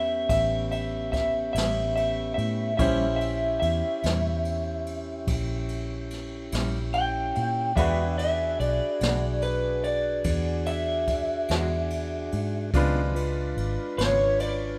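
Slow blues in 12/8 at 48 BPM, this gritty, soulful excerpt is built around a clean electric guitar solo played through a small old amp, slightly broken-up, picked and compressed, sitting up front with lush chorus and analog delay. Beneath it, a bright upright piano with woody, audible action noise comps across the full length, while a mellow tonewheel organ holds flute-like sustained chords with key click and a slow rotary speaker. A vintage muted fingered electric bass gives a round, foam-muted, dark low end that sits close to the listener. A jazz brush drum kit enters at 0.3 seconds with kick, snare and dark ride cymbal, sounding distant and roomy with a rolled-off top, and a second, background electric guitar adds clean, fingered accompaniment with tremolo from 1.5 seconds. The harmony moves from A9 through A#dim7 and E9 to C#7b9 at 12.7 seconds, all set in light reverb and a small room with the rough feel of a home demo.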